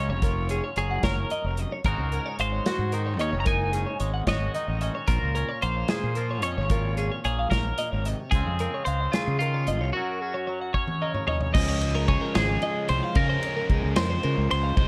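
Bright and playful, this short cut from a longer piece blends math rock and midwest emo in a straight 6/8 at 74 BPM, tuned just below standard pitch. An up-front, clean twelve-string electric guitar carries the melody with a warbly pitch drift and slapback echo, while a second twelve-string adds compressed, sparkling arpeggios under a subtle chorus, and a fingered, twangy electric guitar fills in the lower accompaniment until about 13.2 seconds. Underneath, a growly fuzz bass with overdrive sits forward in the mix beside a dark, smooth acoustic drum kit with a tight kick and medium-tuned snare, entering at 0.2 seconds and moving across cymbals, snare and toms. The harmony drifts from rootless and suspended dominant colours through a minor seventh to a break at 9.9 seconds, capped by a drum fill, before landing on a major seventh chord as a new section begins. There a biting, double-tracked overdriven guitar riff joins at 11.5 seconds, giving the closing moments extra grit within a dry, dark production.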